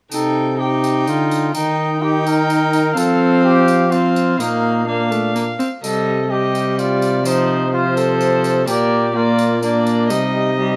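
A moderate stone-room reverb surrounds this short excerpt of a renaissance-style consort dance, giving it a courtly, solemn air. In a straight 3/4 at 126 BPM in C dorian, a mellow, distant cornet with vibrato carries the melody, while a dark, nasal violin with a reedy gut-string tone plays a second line above it. A single viola, smooth-topped and reedy in period style, fills in the accompaniment, and an up-front, close-miked trombone with a soft attack holds the bass. A jingly, bright tambourine with a vintage, band-limited sound sits low in the mix and drops out at 10.3 s, just before the other parts finish at 10.8 s. The harmony moves through Cm, Eb, F and Bb before returning to Cm at the close.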